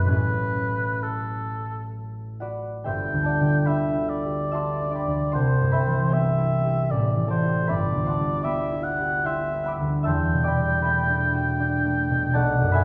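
A vibrato-laden oboe sings the melody in a classical style, holding the foreground with a warm, rounded tone that stays between A4 and G5. Beneath it, a concert harp supplies the accompaniment, its mellow, thumb-plucked strings ringing across a broad span from G1 to G6 and sitting up front beside the oboe. This is a pastoral, dreamy impressionist duo in G major and 3/4, moving freely with rubato at roughly 64 to 81 BPM, and it is cut from a longer piece. The harmony drifts through lush colours, opening on Amaj7 before settling onto Gmaj7 at 2.9 s, then passing through Cmaj7, Am7 and G6 before closing on Em11 at 10.1 s. A wet recital-hall reverb surrounds both players, and the listener seems placed further back in the room, so the sound is soft and gently dulled at the top.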